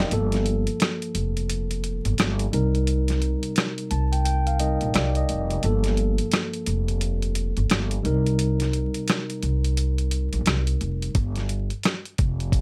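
A clean tine electric piano, a plucked upright bass and a dusty, sampler-style drum kit start together over a bed of vinyl crackle in this tough, gritty boom-bap hip-hop passage, cut from a longer piece. The electric piano plays through its built-in speakers, colored by cassette tape and trimmed at both ends by filters, as it moves between Gm9 and Cm7. Beneath it, the acoustic upright bass with steel strings sounds woody, dark and growly. The compressed drums bring a thumpy kick, a medium-tuned snare, rim clicks and hi-hat, all with a swung sixteenth-note feel. The piano drops out at 11.2 seconds as the harmony lands on Fsus2, leaving bass and drums to carry on until 12.6 seconds. The mix is dry, and all three instruments sit up front.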